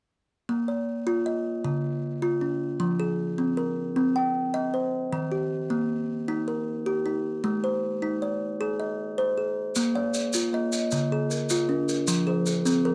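An up-front, woody kalimba on a solid board carries this hypnotic southern African traditional excerpt, its soft, ringing arpeggios turning an mbira-style interlocking cycle in 12/8 at 104 BPM in a Bb equiheptatonic tuning, moving through Bbm, Db, Fm, Cm, Eb and Ab. At 9.8 s grainy, distant maracas enter from a large room, and at 10.0 s a second, airier kalimba on a hollow box joins more quietly with its own mellow fingertip plucking as the cycle begins again. Light reverb gives the whole a gentle sense of space.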